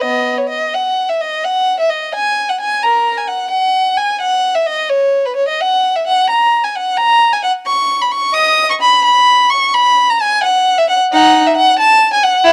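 Flowing in 12/8 at 87 beats per minute counted in dotted quarters, this short excerpt moves with a free, rubato feel that lets the phrases breathe. It is a classical, baroque-style suite movement for unaccompanied violin, and its mood is serene and radiant. A single bowed violin carries the whole 12.5 seconds alone, ranging from B3 up to D#6 with a smooth, even tone, a gentle vibrato and a silky upper register. The instrument sits up front, caught by close, detailed microphones that reveal its warmth. A light reverb adds a touch of air around the lone player, and the fragment is cut from a longer piece.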